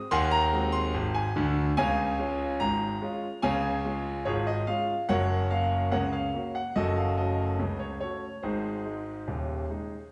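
A wet recital-hall reverb surrounds this recording, giving it the spacious ring of a church or concert hall. In that space a lone concert grand piano sits up front, its tone clear and open with a deep bass and a long sustain. The music is cheerful, jaunty ragtime in a straight 2/4, spanning the keyboard from Eb1 up to Eb6. The harmony opens on Ab7, settles onto Db at 1.8 seconds, and moves through Gb and a darker Gbm before landing on Ab at 8.4 seconds. This brief passage is cut from a longer piece and ends at 10.1 seconds.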